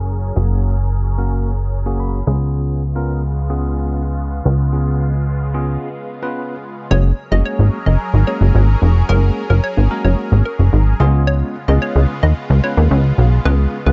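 A punchy, up-front analog bass with a funky, wave-folded pluck drives this upbeat, euphoric pop piece at 110 BPM in F# major, beneath a lush, detuned unison pad treated with chorus and phaser and a clean, bell-like tine electric piano that adds a fill near 1.7 seconds, while a filter sweep and a short break lead to a drop at 6.9 seconds where a hollow, bouncy square-wave pluck takes the melody in a dry, low-passed mix.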